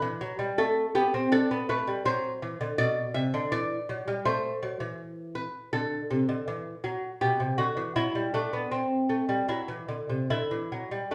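A solo lute carries this short classical piece, a baroque-style dance cut from a longer work that moves with a flowing, dance-like ease in 4/4 and a supple rubato. The instrument sits up front, its gut strings and double courses giving a delicate, fingerpicked tone, with some strings doubled at the octave for added shimmer. Its range spans from B2 up to E5, and the harmony moves from G through D7, a rootless G/B and an F#dim before settling toward Am and a closing Dsus4 at 10.3 seconds. A large studio reverb adds a generous halo, while small room ambience lends the performance an intimate, live-in-the-room feel. The lute plays alone from 0.0 to 11.1 seconds.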